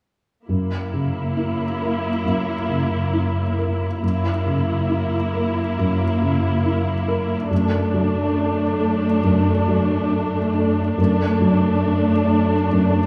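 Longing and moving, this cinematic film-score excerpt unfolds at 69 BPM in 4/4 with a rubato feel, tuned to A4 = 442 Hz. A felt-muted upright piano carries the accompaniment from 0.5 to 13.1 seconds, its thick felt giving a soft, dark, intimate tone with audible action noise. Alongside it, a symphonic viola section plays bowed accompaniment with expressive vibrato, lush and sitting up front in the mix. A studio cello section holds the bass on a low F#2, its bowed ensemble sound rich, smooth and even. The harmony moves from F#7 to D/F# at 7.5 seconds, and a wet scoring-stage reverb places the listener further back in the room.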